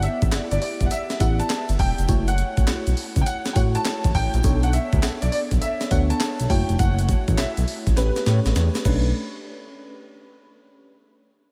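R&B in a new jack swing style, this short passage cut from a longer piece feels confident and slick, riding a swung sixteenth-note groove in 4/4. A gritty, compressed breakbeat drum kit with a thumpy kick, medium-tuned snare, hi-hat, handclaps, tambourine and crash sits up front, and a drum fill arrives at 8.0 s. Beside it, a smooth synth bass built from sawtooth and square waves holds sustained notes with vibrato, also up front, while a grainy, very quiet tube shaker adds texture. A lush, detuned FM electric piano layered with a soft pad supplies chorus- and phaser-coloured chords moving through G6, F#m7, Bm9 and A9, as a vintage-toned grand piano carries the melody through an ensemble chorus and diffuse ambient delay. The whole mix sits in light digital reverb, and the parts drop away by about 9.2 s, leaving the final stretch unaccompanied by chords.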